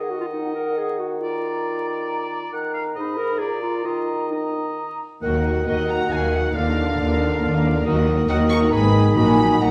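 A dark, woody violin section carries the melody from 5.7 seconds, bowed sul tasto with vibrato and sounding lush yet distant, in this urgent, stormy fragment of a quick classical-period symphonic movement in Eb minor, set in 3/4 at 136 BPM. The opening belongs to the woodwinds: a clear, roomy solo oboe, a pure flute section with vibrato, and a solo clarinet weave secondary lines over a mellow, vintage-tinged bassoon accompaniment, moving from Ebm through Abm and Bb7. At 5.2 seconds the full orchestra arrives, with a warm background violin section on a second line, a very quiet, intimate viola section, and a tight, close-miked French horn section holding sustained chords. The bass is anchored by a floating, smooth-topped cello section and a double bass section, both bowed sul tasto with soft attacks. A very quiet, close and dry timpani strikes Bb2 with medium mallets at 9.2 seconds as the harmony settles on Ebm over Bb. 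A wet recital-hall reverb and vinyl crackle lend the recording a hazy, aged patina.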